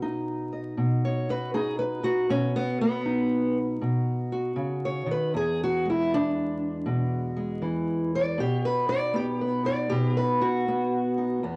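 A 79 BPM in 4/4 with swung eighth notes sets up this short cut of acoustic country blues, rollicking yet soulful in mood. A fingerpicked steel-string acoustic guitar carries the whole passage alone from 0.0 to 11.6 seconds, sitting up front with a dark, boxy parlour tone and a cassette-tape colouring, ranging from E2 up to D#5. The harmony rests on B, moves to E7 at 5.3 seconds, and settles back on B at 8.4 seconds. Moderate spring reverb and a small room ambience surround the playing. It has the feel of a home recording on cassette, with vinyl crackle beneath, and the tuning sits at A4 = 439 Hz.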